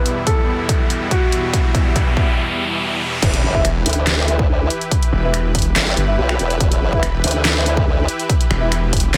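A half-time 4/4 pulse at 142 BPM drives this aggressive, menacing heavy wobble dubstep excerpt in E minor, where a dark baby grand piano melody with delay, a warbly lo-fi tape-like pad in the background, huge detuned supersaw chords pumping against the sidechain, an electronic riser and a drum fill build until the drop at 3.2 seconds. There, the punchy electronic kick and deep-snared kit with crash, snaps, claps and hi-hat, both up front in a large room and present since the opening moments, carry a chorused formant-sweep wobble bass and a snarling, growling distorted saw bass beneath mellow, softly vibrato brass stabs with delay set back in the mix.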